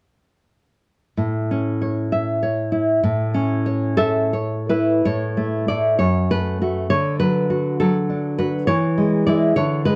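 A fingerpicked nylon-string guitar sits up front in this romantic solo classical piece, its dark, full-bodied tone carrying a nostalgic, warm mood. The music moves in a rubato 6/8 at roughly 51-70 BPM counted in dotted quarters, in A major with the guitar tuned to A4 = 438 Hz. The guitar enters at 1.2 s and spans F#2 to E5, resting on an A chord before a second section begins at 5.0 s and passes through F#m and Bm/D toward E. A light reverb surrounds the instrument, and the recording carries the worn, warbling character of old cassette tape, with a warbly, drifting pitch. This short passage is cut from a longer piece and ends at 10.0 s.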